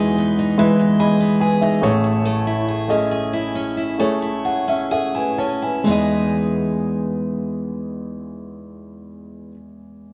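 A moderate spring reverb and small-room ambience give this short passage, cut from a longer piece, an intimate, softly glowing sound. It is an emotional, hopeful pop ballad in a straight, unhurried four, easing its pace through the opening stretch. A warm grand piano sits up front as the accompaniment, ranging from deep bass notes to a bright upper register. Beside it, a full-bodied, picked steel-string dreadnought acoustic guitar, also up front, plays arpeggios in its middle range until 9.6 seconds. The piano adds a fill from 4.0 to 5.9 seconds, leading into a second section where the harmony settles back onto its home major-seventh chord.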